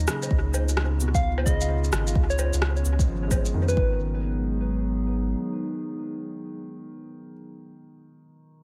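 A swung 4/4 groove at 130 BPM drives this short, melancholic future garage excerpt in G# dorian, its electronic kick and tape-warm layer of rim click, cabasa, shaker and woodblock playing until about 3.9 seconds, with the percussion carrying analog delay and the band hitting an accent at 3.8 seconds as the harmony moves from C#13 to G#m7. Underneath, a round, soft dub sub bass pumps against the sidechain while a woody upright piano with dub echo and a warbling, nostalgic pad with chorus and reverb hold the chords, the pad ending at 7.3 seconds and the piano lingering to 8.6 seconds. A gentle, keys-like FM lead with chorus, tremolo and tape echo adds a brief melody between B4 and E#5, all set in a rainy, echo-heavy digital ambience.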